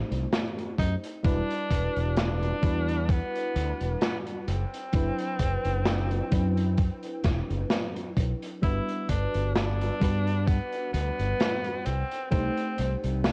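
This short excerpt, cut from a longer piece, has a hazy cassette-tape sound with the close feel of a small room. It is dreamy, nostalgic vaporwave in G major at a slow 65 BPM in 4/4, with a light swing on the sixteenths. A mellow FM electric piano opens the accompaniment, round and softly warbling under a subtle chorus, moving through chords such as Em9, D13/F#, Gmaj7 and back to Cm6. Almost at once a punchy, up-front fretless bass joins with its own subtle chorus, along with a raw garage kit of hi-hat and snare, saturated and gritty with a rolled-off top, sampler grit and gated reverb. At 0.8 seconds a thumpy electronic kick drum with the same sampler grit enters, and a bright tenor saxophone takes the melody with vibrato, trailed by tape echo.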